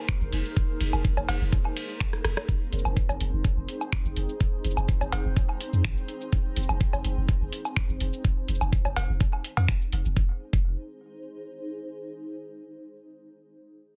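A knocking, up-front electronic kick drives this clinical, cool minimal techno cut at 125 BPM in F minor, joined by a deep, punchy sine sub bass with a pitch-drop attack and sidechain pumping, plus a garage kit of finger snaps, shaker, rim clicks, ride and metallic hats, all softened by low-pass filtering. Tape-echoed woodblock, bongos and cowbell with an analog tape-warm tone come in at 0.9 seconds, while a bubbling, detuned sawtooth texture with random resonant filter steps and chorus sits in the background. A cloudy, evolving granular pad with a moving notch drifts along on a single Fm chord, and after a short drum fill at 2.1 seconds it is the last part heard, sounding until 12.0 seconds in this dense, heavily limited and dry mix.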